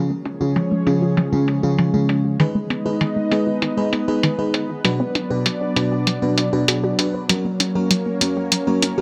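Synthwave in 4/4 with a straight feel, this brief cut from a longer piece carries a romantic, uplifting mood. A smooth, warbling analog pad, built from detuned sawtooth tones with a slow attack and a touch of vintage 12-bit sampler grit, holds sustained chords up front through a progression of C#, G#m, Bm and F#. Behind it, a lush, punchy unison pluck spins arpeggios in the background, its detuned sawtooth and sine layers colored by phaser and delay. A round, full-bodied FM electric piano adds dark, decaying stabs with chorus and delay, while a sampler-style electronic hi-hat, tape-warm and re-recorded in a small room, enters at 0.3 seconds and sits up front. Filter sweeps run across the drums, the pad and the arpeggio throughout, and a moderate lush hall reverb of 2.5 seconds gives the mix its spacious glow.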